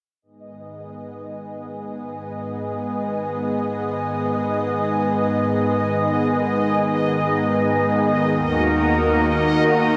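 This ambient, sequencer-driven space music drifts in free time in G# minor, tuned slightly flat to A4 = 437 Hz, with a hypnotic, mysterious mood. A lush unison pad carries sustained chords from D#2 to D#5, its thick, detuned sawtooth and square-wave layers given a slow attack, a long release and a chorus sheen that sits bright and up front. Behind it, a quieter bubbling texture on D#5 steps through random resonant filter changes, its soft-attack sawtooth voice coloured by chorus and its own built-in reverb. Both parts fade in together from 0.2 seconds, resting on G#m before shifting to D#m at 8.3 seconds. A huge, wet reverb with a 7.0-second tail surrounds the sound, and this brief fragment is cut from a longer piece.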